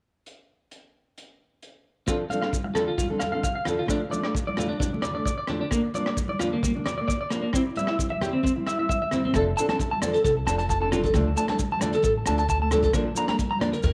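An up-front, slightly broken-up electric guitar picks tape-echoed arpeggios through this carefree highlife guitar band excerpt at 132 BPM in F major, over a crunchy, saturated breakbeat kit of punchy kick, hi-hat and rim click that plays alone from 0.3 seconds. The guitar joins at 2.1 seconds together with a boxy, fingerpicked nylon-string guitar with audible finger squeak and grainy maracas, with bright, distant congas soon after. After a drum fill, a woody pizzicato upright bass enters at 9.3 seconds, all within a moderate spring reverb and small room ambience.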